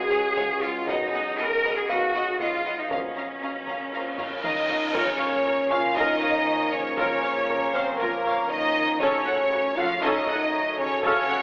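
A brooding, futuristic hybrid orchestral and electronic film score cue at 118 BPM in Bb minor, where a mellow French horn section and background trombones sustain chords over lush bowed cellos and a faint double bass section carrying the bass, all beneath a deep, detuned ambient pad with chorus, while a dark, intimate grand piano with audible action noise adds texture. Violins carry a smooth melody and a focused second line over close, lush violas, and compressed, saturated taiko drums with hard sticks sit in the background from 0.4 seconds. A cymbal swell and drum fill build to a huge, dark impact at 4.9 seconds, all heard through a wet hall reverb with a thin, telephone-like tone in this excerpt from a longer piece.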